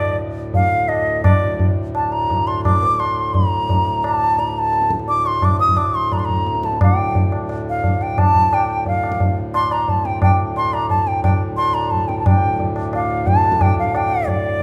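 Solemn and introspective, this short cut from a longer Hindustani classical performance in raga Bhairavi gathers pace throughout its 14.6 seconds. A bright, pure bamboo bansuri carries the melody up front with a crisp attack, lifted highs and expressive vibrato, set over a reedy, breathing pedal harmonium drone, while a low-tuned tabla with a short ring joins at 0.5 seconds. The players sit in a moderate recital-hall reverb, the tabla close as if heard in a small room.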